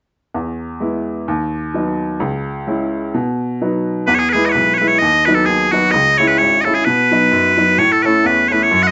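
Celtic folk in E major, this short cut from a longer piece moves at 129 BPM in 2/4 with a lightly swung eighth-note lilt, rollicking and bright in mood. A woody, polished upright piano opens alone at 0.3 seconds, laying down accompaniment that runs from its low register up through the middle. Its chords cycle through E, B over D#, C#m and B, and the same pattern repeats once the second section begins. At 4.1 seconds loud bagpipes enter carrying the melody with a piercing, continuous tone, sitting up front above the piano. A final turn to A arrives at 7.8 seconds, just before the piece cuts off. A moderate studio reverb gives the room a modest sense of space, and the top end is gently rounded off.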